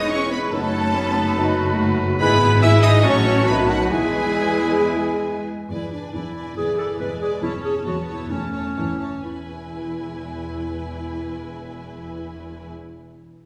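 An expressive violin section carries the melody of this graceful, lively classical-period orchestral movement in E major at 123-146 BPM with a rubato feel, over a clear, intense second violin line, while oboe, hollow flute and soft-attack clarinet weave background lines and distant trumpet stabs and very quiet horn chords sound during the first 5.5 seconds, warm bassoon and smooth violas accompany, lush cellos and focused double basses anchor the bass, and the tempo slows from 4.8 to 9.2 seconds within a reverberant hall.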